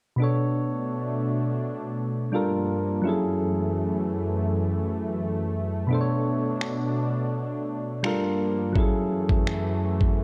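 Late-night and moody, this short contemporary R&B excerpt at 84 BPM opens at 0.2 seconds with round, mellow electric-piano-like synth keys and a warbling, detuned analog pad, both chorused, moving through Bm7, Gm7 and F#m7, until a gritty sampler-style drum kit with a thumpy kick and finger snaps enters at 6.6 seconds, the whole mix soaked in dreamy plate reverb with a cassette-tape tint.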